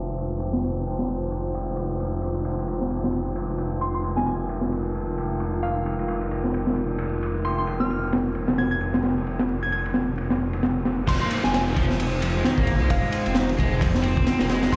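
A swung 132 BPM breakbeat groove in F minor, funky and swaggering, drives this short cut as a crunchy, saturated acoustic kit with a high-tuned snare and dark cymbals enters at 0.2 seconds over a thick, menacing detuned saw bass and a moody, nasal analog pad pumping on Fm7. A glassy, warbling FM bell melody with tremolo and delay arrives at 3.8 seconds, and at the drop at 11.1 seconds a bright, double-tracked overdriven guitar riff joins and a very quiet downlifter returns, all steeped in vinyl crackle, plate reverb and a big, bare-room sound.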